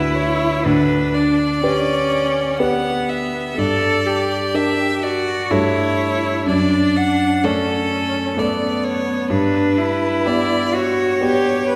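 In a rubato 3/4 at 62 BPM, this lyrical, tender slow romantic movement for piano trio, cut from a longer piece, sets a clear violin singing the melody with smooth vibrato over a rich, bowed cello second line and a dark, mellow grand piano whose intimate accompaniment carries audible action noise, all heard from further back in a wet scoring-stage reverb as the harmony moves from Bm/D through Gm and A7/G to rest on G at 9.3 seconds.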